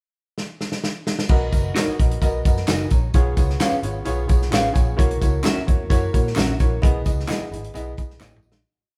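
Uplifting and joyful, this short uptempo 1960s-style soul piece at 130 BPM in B major opens with a drum fill on a tight, up-front kit laying down a backbeat groove, before the band comes in from 1.3 seconds in a live room with light reverb. A dark, foam-muted fingered bass plays a syncopated line with ghost notes and chromatic approach notes, while a worn, slightly detuned upright piano plays eighth-note chords and adds a short fill at 4.3 seconds. Slightly broken-up guitar stabs with spring reverb hit the backbeat alongside background tambourine and handclaps, barely audible low-tuned congas join at 5.0 seconds, and the whole band fades out from 6.8 seconds.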